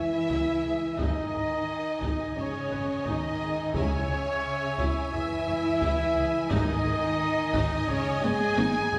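Cinematic, epic orchestral film score in C# minor at 87 BPM, this dark, relentless passage is cut from a longer piece and moves through C#m and G#5 harmony. A barely audible, huge sub drop marks the opening impact, and from 0.3 seconds a distant taiko ensemble plays with heavy sticks in a large room. A violin section carries the expressive, vibrato-laden melody in the background, joined by a second violin line and a pure, hollow flute section sitting very quietly at a distance. Rich violas fill in the accompaniment, while mellow French horns hold tight, roomy sustained chords and a trumpet section adds distant, classical-style stabs. Dark cellos and double basses anchor the bass with lush bowed tone, and round, soft-mallet timpani sound between 6.5 and 7.5 seconds before a drum fill closes the passage at 8.2 seconds. A reverberant recital-hall acoustic with a 1.5-second decay gives the whole ensemble a churchlike, spacious sound.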